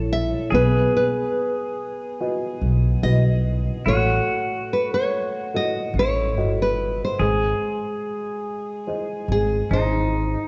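Intimate and melancholic, this brief cut from a longer acoustic folk-pop ballad moves with a straight feel in 4/4. A fingerpicked nylon-string guitar carries the melody up front, its classical tone warm and marked by finger squeaks, while a pizzicato upright bass with steel strings sits close and woody underneath. A dark, mellow upright piano, slightly detuned and vintage in character with audible action noise, supplies the accompaniment. A bright, twangy pedal steel guitar, played with fingerpicks and slide, adds a clean, compressed second line with volume swells. The harmony moves from A to B, then to D#dim over A at 3.9 seconds and G# at 7.2 seconds, all set in a moderate concert hall reverb and colored by the warbly pitch drift of worn old cassette tape.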